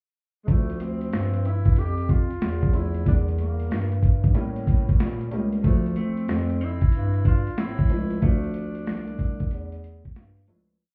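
A breathy, close-miked tenor saxophone opens this smoky jazz-hop piece with a pickup at 0.4 s, then spins motif-based call phrases with scooped notes over a woody, slightly detuned upright piano pushing rootless chords and a mellow bass clarinet walking low with ghost notes, slides and chromatic approach notes. A gritty, compressed boom bap kit sits up front with a thumpy kick, a high-tuned snare and laid-back swung sixteenth-note hats, while a dark, clean semi-hollow electric guitar enters at 5.6 s with a spring-reverbed harmony line mostly in thirds. The nocturnal mix sounds muffled, as if heard through a wall, with a touch of club reverb, before fading out from 8.2 s.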